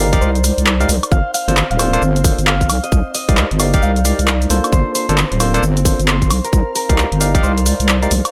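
A deep, wobbling square-and-sine bass with chorus sits up front in this late-night, bouncy two-step UK garage excerpt at 133 BPM with swung 16ths, joined by a tight layered electronic kick, a dry, overdriven analog drum machine of cabasa, handclaps, hi-hat, rim click and woodblock, bright, barky tine electric piano stabs and a ringing thumb-plucked concert harp melody both carrying delay, while a warbly, nostalgic lo-fi tape-like pad and a very quiet ethereal, airy pad drift in at 0.4 and 0.5 seconds over Cm11 and Gm11 chords in a dry room.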